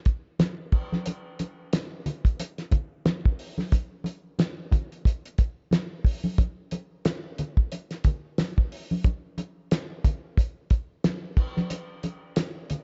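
A cloth-damped, thuddy drum kit opens this soul excerpt in a swung 4/4, its fat snare, tight kick, hi-hat and dark-toned crash sitting dry and up front with a rolled-off top. Congas join at 0.4 seconds, thick-skinned and close, played with soft hands. The production is dark and nearly free of reverb, giving the groove a silky, bittersweet mood.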